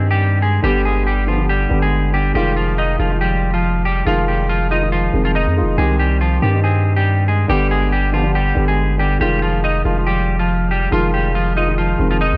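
A half-time trap groove in 4/4 drives this brooding, menacing hip hop fragment, where a clean, hollow-body semi-hollow electric guitar carries the melody up front through spring reverb and a low-pass filter, a dark concert grand piano adds mellow, filtered accompaniment, and a long sustained 808-style bass with a deep sine tone, fast attack and decaying tail anchors the low end over a Cm, G and Fm7 progression set in studio reverb.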